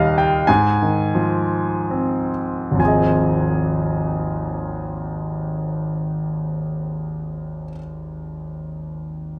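A clear, intimate concert grand piano plays alone from the start of this short classical excerpt in Ab major, a relaxed, sunny, lyrical solo in 3/4 whose rubato moves between 62 and 103 BPM and slows over the first 2.8 seconds, with a high Ab6 ringing out at 0.5 seconds, deep bass, long sustain and audible action noise set up front in a moderate recital hall reverb before a new section begins at 2.8 seconds and the piano stops at 9.4 seconds.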